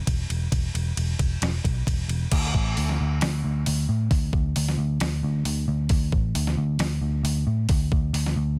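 A muted, picked electric bass and a crisp 8-bit drum machine open this short fragment of shoegaze-leaning dream-pop rock together, moving at a straight 134 BPM in 4/4 with a hazy, blissful mood. The bass sits up front with a dark, round, punchy tone low in its register, while the overdriven, sampler-style drums bring a thumpy kick, fat snare, hi-hat, and crash and ride cymbals. After a brief opening passage, a new section begins at 2.3 seconds and carries through to the end, all set in a dry, dense, heavily limited modern mix.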